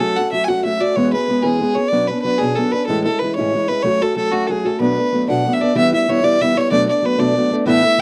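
A dry, close 1970s-style studio sound with small-room ambience frames this spirited, dark and lively Celtic folk piece in B dorian, moving at 125 BPM in a straight 6/8 and cut from a longer performance. Up front, a single bowed fiddle carries the melody with a rich, earthy tone and light vibrato, while a fingerpicked steel-string parlour guitar supplies shadowy accompaniment, its finger squeaks audible. The harmony shifts through chords such as F#m, E6 and Amaj7 before a new section arrives at 5.8 s on Em and Bm7.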